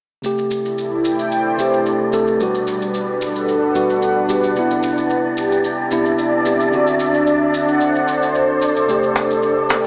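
Organic downtempo at 111 BPM in A dorian with a gentle 16th-note swing, this warm, earthy excerpt pairs a mellow, clean tine electric piano with digital delay and a smooth, detuned sawtooth pad with chorus, while a breathy, wind-like tuned noise texture drifts alongside, a tape-toned electronic shaker ticks throughout, and a snappy, up-front cajon enters only at 9.2 s, all moving through Am7, Gmaj7, Cmaj7 and D7 inside a huge ambient reverb with a band-limited AM radio colour.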